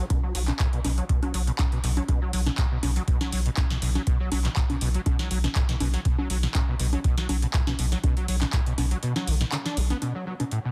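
A squelchy, gritty acid bass riff drives this raw acid house excerpt, its resonant sawtooth tone saturated and overdriven, treated with ensemble chorus, tape echo and sidechain pumping while a filter sweep runs across it from 0.0 to 10.0 seconds. Beneath it, a round analog bass holds a deep, dark low B, its square-and-sine tone sustained and up front, pumping against the beat. A booming analog drum machine supplies congas, handclaps, metallic hats and a crisp snare, with a short room on the snare, clap and hats. A deep electronic kick with a tape-warm character anchors the swung 4/4 groove until it drops out around 9.0 seconds. The mix is dry and close, finished with a dense, heavily limited modern master that keeps the driving energy relentless.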